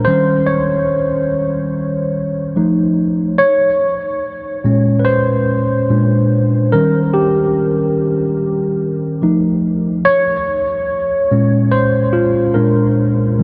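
R&B in a soulful, sultry mood, this excerpt features a worn, slightly out-of-tune tine electric piano playing alone and up front from 0.0 to 13.4 seconds, its clean, direct tone colored by analog chorus and tape echo and drenched in a huge ambient reverb that lends the swung sixteenth-note groove a dreamy haze over chords moving from Eb7 and F7 to Bbm9 and Bb7.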